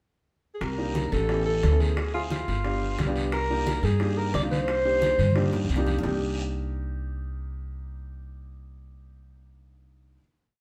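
A clear, forceful alto saxophone opens this short, fiery Afro-Cuban jazz piece with a pickup, then states a jazz-style melody of motif-based call phrases, up front with vibrato and a smooth top. Almost at once a woody, thumpy upright bass joins with a pizzicato tumbao on gut strings that anticipates the chords. Congas and bongos sit in the background: thick-skinned, low-tuned congas with slaps and open strokes, and round bongos in steady eighths with a hand bell, joined by a raspy guiro. A warm concert grand piano with deep bass adds polished, syncopated chord stabs in rootless voicings with short sustain, giving the harmony a sultry edge. After a drum fill from 5.2 s, a final chord arrives at 6.0 s and is held by bass and piano once the saxophone and percussion have stopped, all heard as a band playing live in one room within a wet studio reverb.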